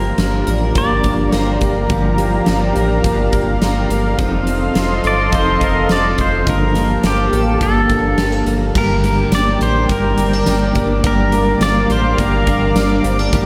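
Ethereal and haunting, this dream pop excerpt drifts at 105 BPM in G minor, moving from Gm7 through F7 and Gm9 before settling on Gm. A twangy pedal steel guitar, played with fingerpicks and slide and colored by analog delay, carries the melody with volume swells, sounding briefly at the start and returning at 5.1 seconds. Beneath it, a shimmering, octave-doubled twelve-string acoustic guitar picks arpeggios through lush chorus and delay, while a dark, clean electric guitar sits in the background with tremolo and chorus. A thick, detuned sawtooth pad holds sustained chords with a slow attack and long release, and a deep sine sub bass with an added octave anchors the low end. A huge arena drum kit with a boomy kick, fat snare, bright cymbals and tambourine enters at 0.2 seconds, and the whole mix is soaked in plate reverb for a dreamy, floating sound.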